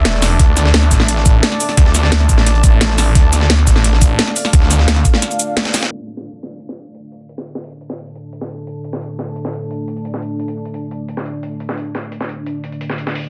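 Aggressive and tense, this dark technical drum and bass runs at 174 BPM in D minor, cut from a longer piece. It opens on the drop, with a snarling distorted saw bass growling up front, joined at 0.4 seconds by a knocking, layered electronic kick, both dropping out around 5.0 to 5.1 seconds as a short break and a band accent at 5.6 seconds lead into the next section. A deep, moody ambient pad holds sustained chords throughout, its detuned sawtooth unison and wave-folded, ring-modulated tone softened by chorus, built-in reverb and sidechain pumping, and a filter sweep moves across it from 5.9 seconds to the end. Two drum kits carry the groove: an up-front kit with a cracking snare, metallic hats, shaker and crash cymbal, and a quieter, gritty sampler-style breakbeat kit of hi-hat and medium-tuned snare, both tape-flavoured. The mix is dry, dense and heavily limited, with a rounded top end from low-pass filtering.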